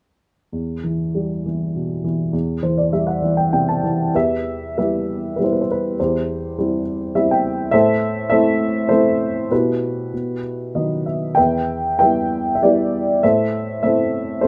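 This is a lyrical classical solo piano piece in E minor, taken from a longer work, with a moody, cool character. It moves in 3/4 at roughly 94-105 BPM with a rubato feel, and the tuning sits at A4 = 439 Hz. A lone upright piano plays throughout, spanning E2 to A5, its tone dark, woody and slightly detuned, with audible action noise that lends it a worn, intimate quality. Placed up front in light reverb, it adds short fills, the first arriving around 2.3 seconds. The harmony circles E minor, C over E and A minor, leaning on B before returning to E minor, and a second section opens at 4.1 seconds.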